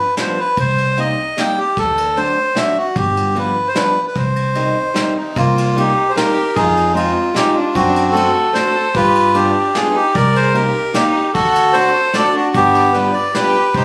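A reedy bandoneon sits up front carrying the melody of this bittersweet, nostalgic musette waltz, over a woody fingerpicked ladder-braced guitar, dark pizzicato upright bass and a brushed kit with dark cymbals, while an airy sul tasto violin with light vibrato joins on a second line at 5.2 seconds, all heard through a phone recording with club reverb in this short cut from a longer piece.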